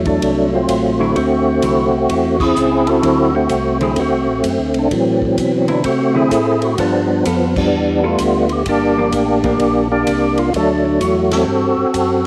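Light reverb and a small room ambience frame this greasy, soulful soul jazz organ trio cut, swinging at 128 BPM in 4/4 in D mixolydian. Up front, a fat, lightly overdriven tonewheel organ carries the melody with third-harmonic percussion, key click, chorus vibrato and a slow rotary speaker. A second, fuller tonewheel organ holds down the bass line with its own overdrive, chorus vibrato and slow rotary. Behind them sits an airy, polished big-band drum kit with a punchy kick, a medium-tuned snare, hi-hat, ride and crash. A dark, clean, compressed hollow-body electric guitar comps in the background from 1.0 s until 9.6 s. The harmony moves from D9 to G9 and Gm7 before returning to D9, with band accents punctuating the swing.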